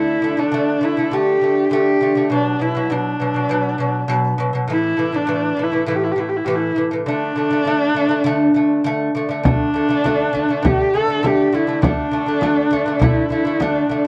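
A clear, husky horsehead fiddle carries the melody with vibrato and portamento from the start, bowed up front with a touch of plate reverb, while a delicate fingerpicked lute on double gut strings plays arpeggios beneath it in this Mongolian folk excerpt cut from a longer piece. At 9.5 seconds a deep frame drum played with soft hands joins close and up front, giving the vast, galloping mood a firmer footing. The dark production sits in a modest booth ambience.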